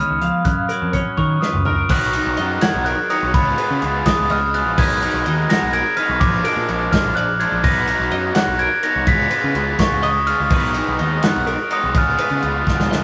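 A straight 6/8 pulse at 84 BPM, counted in dotted quarters, drives this intricate, playful slice of math rock and midwest emo, cut from a longer piece and recorded with the rough feel of a rehearsal room. A mellow, bell-like glockenspiel played with rubber mallets carries the melody over twangy twelve-string electric guitars: one gives background accompaniment only until 3.3 seconds, while the other keeps up tremolo-tinged arpeggios throughout, joined by a growling overdriven picked bass. An up-front, loose indie drum kit with a tight kick and rolled-off top enters at 0.2 seconds and fills into the section change at 1.9 seconds, where a raw, double-tracked overdriven garage guitar riff arrives over chords moving through Bmaj9, C#7 and G#m7/B.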